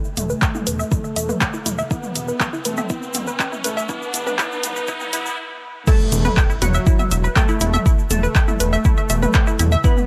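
Melodic techno at 121 BPM in E minor, this dramatic, driving excerpt builds for 5.9 seconds as filter sweeps move across the analog pluck arpeggios and the bold, brassy synth melody over a deep, up-front electronic kick, an overdriven deep house kit with claps, hats, toms and crash, a fat, detuned sawtooth bass, a grainy egg shaker and a rising riser, then after a brief stop it drops into an impact and an Emadd9 chord as a glassy, crystalline wavetable pluck joins in the background, with sidechain pumping on the melodic parts and bass, delay and chorus on the pluck, brass and wavetable lines, and a dry, high-passed sound.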